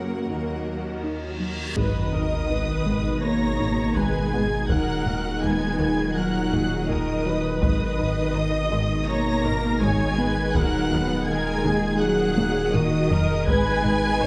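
Opening on lush, vibrato-rich violins carrying a melody and second line over rich violas, cellos, clear double basses, a very quiet mellow trombone section and a calm organ-like drone, this vast, brooding cinematic excerpt in G# minor at 82 BPM adds a warbling, lo-fi dusty pluck arpeggio at 0.3 seconds and an electronic reverse cymbal and sub drop from 0.9 seconds, then at 1.8 seconds lands an impact as mellow French horns, a deep saturated sine sub bass and heavy-stick taiko drums in the background join, shifting between D#m and G#madd9 in a wet scoring-stage reverb before a drum fill at 12.4 seconds.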